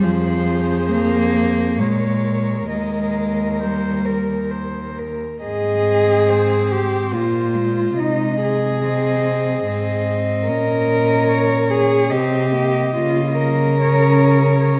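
Bathed in the wet reverb of a scoring stage, this serene, lyrical classical passage in a rubato three-four sway, taken from a longer work, sets four bowed cellos playing sul tasto throughout its 14.8 seconds: a pure, floating melody cello on top, a dark, woody second voice with vibrato placed up front, an intimate, airy-bowed accompaniment cello, and a soft-attacked bass cello that also sits forward, while the harmony moves from F minor toward B-flat minor.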